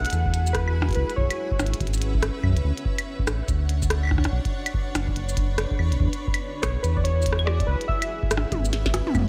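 A digital ambience surrounds this intricate, melancholic IDM passage, cut from a longer piece and swung on the sixteenths. A blurred, granular cloud pad holds sustained chords throughout, while a round, dark analog bass with tube saturation sits up front. Glitchy electronic drums skitter in studio reverb, with a tiny snare, clicky hats, claves, rim clicks, blips, toms and shaker, joined at 0.3 seconds by a deep electronic kick re-recorded in a large room; a nostalgic, warbling lo-fi synth keys melody with chorus and digital delay appears at the opening, returns at 6.6 seconds, and a drum fill arrives at 8.5 seconds.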